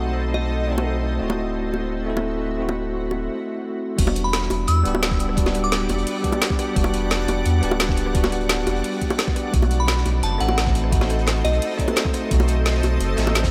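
A deep, round sub bass sits up front in this rolling, melancholic liquid drum and bass excerpt, beneath a clean, bell-like tine electric piano with delay and a shimmering, ethereal pad with sidechain pumping, the whole mix soaked in a huge, dreamy reverb. A crystalline FM synth bell with chorus and delay carries the melody in short phrases from 0.3 s, while very quiet, tight, high-tuned bongos sit close and dry. After a brief break, the drop arrives at 4.0 s with an overdriven knocking kick, a garage kit with a woody snare and metallic hats, and a gritty, saturated breakbeat kit tucked in the background.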